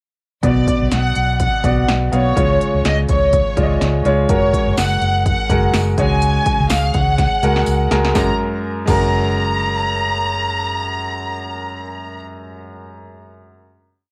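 A driving pop backbeat at 124 BPM in 4/4, with a light swing on the sixteenths, carries this hopeful, piano-driven pop piece in F# major. A layered electronic kit supplies a punchy kick and snare under crisp hats with a tape-softened edge. A dark, round, foam-muted electric bass pushes steady eighth notes beneath. The clear, intimate baby grand, with audible action noise and a cassette-tinged plate reverb, pushes drop-2 chords decorated with grace notes through Bm, C#, F#add9 and C#sus4. Above it, a lush bowed violin section with expressive vibrato sings song-like motifs in plate reverb, while a jingly tambourine joins at 4.8 seconds to mark the backbeat from the background. After a drum fill, the pre-chorus resolves onto a final F#add9 chord at 8.2 seconds, with the piano sounding on alone until 14.1 seconds.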